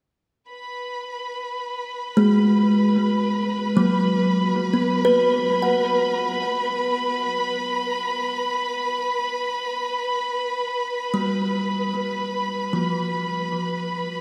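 A woody, hollow-toned kalimba enters at 2.2 seconds with ringing arpeggios steeped in tape echo and fading out, drifting up front over a focused, smooth-topped chamber violin section that has held a rich, vibrato-laden bowed texture since 0.5 seconds, all of it soaked in a huge, dreamy reverb for a melancholic yet serene ambient passage cut from a longer piece.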